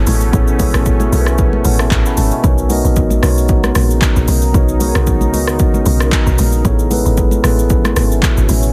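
This short amapiano clip has a dense, heavily limited modern sound with little reverb, and its mood is relaxed and soulful, with a 16th-note swing. A deep, round log drum bass carries the low end, percussive and quick to attack before it decays, with a noisy FM edge that still stays mellow. An up-front electronic deep house kit brings a punchy kick, smooth hi-hats, handclaps, rim clicks and shaker, its layered sound re-recorded in a small room. A clean, direct tine electric piano plays the accompaniment over chords that move from Amaj9 to Bmaj9 at 2.4 seconds and back to Amaj9 at 6.6 seconds. Beneath it sits a moody, detuned sawtooth pad with slow attack, long release, wave-folding, ring modulation, chorus and its own reverb, while very quiet congas add a bright, damped, high-tuned skin sound.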